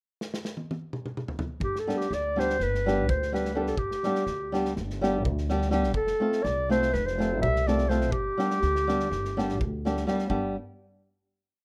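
Counted in 9/8 at 248 eighth-note beats per minute with a straight feel, this festive, virtuosic Balkan wedding-band folk piece sits in G mixolydian, tuned to A4 = 436 Hz. A loose acoustic drum kit opens with a fill at 0.2 seconds, its punchy kick, medium-tuned snare and toms carrying a two-stick pattern through a pumping small room, mixed lower than the other parts. At 1.6 seconds the mellow, soft-attacked clarinet takes the solo in a classical style, building its motif-based melody in sentence-like phrases. Beneath it, the woody pizzicato upright bass on steel strings plays root and fifth on the main beats, while a dark, fingerpicked flamenco guitar adds off-beat triad chords, all up front over a harmony that moves from G to F and back to G. A small room reverb gives the whole a rough home-demo quality, and the piece closes on a final chord from 10.3 seconds.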